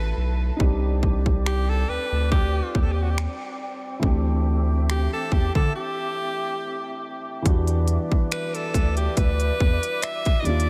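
Light reverb and a small-room ambience frame this smooth, dreamy contemporary R&B excerpt at 70 BPM with a gentle 16th-note swing, where an edgy, close-miked alto saxophone with vibrato and delay carries the melody over soft felt-muted upright piano, breathy, hollow sustained chords from a small flute group and a deep, saturated sine sub bass up front, while a crisp electronic trap kit of finger snaps, hi-hat and hard-clipped kick enters at 0.6 seconds before a break at 5.7 seconds.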